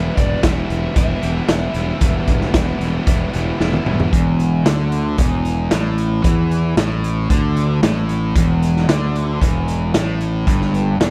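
A punchy, fuzz-laden fingered bass underpins this gritty, brooding classic rock clip, cut from a longer piece, alongside a double-tracked overdriven guitar riff and a raw, saturated garage drum kit in a pumping small room, while a dark lead guitar through a small cranked amp, treated with tape echo, sits in the background for the first 3.6 seconds before a drum fill ushers in a new section at 4.1 seconds.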